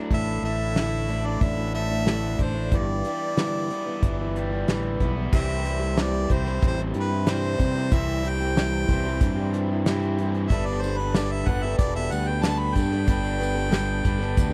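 A boxy, picked parlour acoustic guitar and a raw, overdriven, double-tracked garage guitar riff open this nostalgic folk rock and heartland rock excerpt at 93 BPM, joined almost at once by a clear, punchy harmonica melody, a bright fingered electric bass and a soft, up-front brush kit, with a jingly tambourine slipping in very quietly at 10.7 seconds as the chords move from Asus4 through C to Gadd9, all in a dry, close 1970s-style studio sound.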